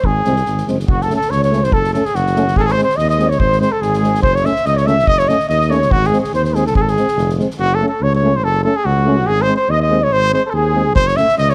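A short cut from a longer Balkan brass band piece opens with the trumpet, flugelhorn, tuba and soft-mallet drum kit all sounding at once, in a bittersweet, virtuosic mood over a swung two-beat pulse. The trumpet carries the melody up front with a mellow tone and light vibrato, close and present, while the flugelhorn shadows it as a very quiet second line, heard distant and roomy with a warm vibrato. Beneath them the tuba holds the bass with a mellow, forward sound, and from 0.3 seconds the euphonium and trombone fill in quiet accompaniment in the background, the euphonium clear and the trombone soft-edged with a smooth top. The drum kit gives a punchy kick and fat snare in a big, natural-sounding room, then drops out at 7.5 seconds before returning at 11.0 seconds. The harmony sways between G# and F# minor throughout, and the whole band is captured with close, detailed microphones and a light touch of reverb.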